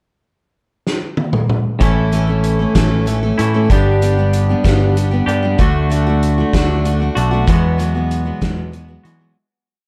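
A loose indie drum kit opens this short, jangly folk rock and heartland rock piece with a fill at 0.9 s, its fat snare and punchy kick leading into a 6/8 groove at 64 BPM in A major. At 1.8 s a full-bodied steel-string acoustic guitar strums sixteenths in open chord shapes, a twangy, clean electric guitar plays ringing chords, and a picked electric bass sits up front with a dotted figure as the verse moves through A, G, D and Eadd9. The dark, warm production keeps reverb to a minimum, and the piece fades out from 7.5 s.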